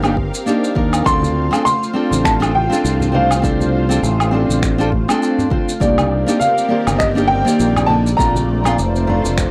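Smooth and warm, this swung sunset chillout excerpt opens with an up-front fingerpicked nylon-string guitar under tape echo, a fingered electric bass, a lush detuned pad with chorus and phaser, and electronic woodblock, shaker and finger snaps, joined at 0.2 s by a deep electronic kick. At 1.1 s a dark, worn baby grand piano with audible action noise takes the melody through tape echo, alongside faint ringing Celtic harp arpeggios, and at 1.2 s soft, low-tuned congas slip in very quietly. The harmony moves from Cm9 to Dm7, back to Cm9 and on to Bbmaj9, all captured in a dry, gritty small-room recording with transformer saturation.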